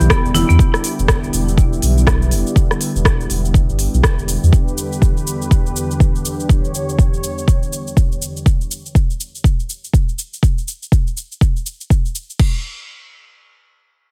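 Afro house at 122 BPM with a 16th-note swing, warm and spiritual in mood, this cut from a longer piece sits on Em7 before moving to G/E at 4.5 seconds. An up-front, deep electronic kick drives it alongside an afro-pop kit of crisp hi-hats, cabasa, crash and rim click, while a round sine sub bass pumps under a smooth, warbling, detuned analog pad with lush chorus and sidechain pumping. Brief touches stand out near the start: ringing, high-tuned congas with hard hands in the background, and a bright marimba arpeggio under low-pass filtering and dub echo, all in a digital ambience.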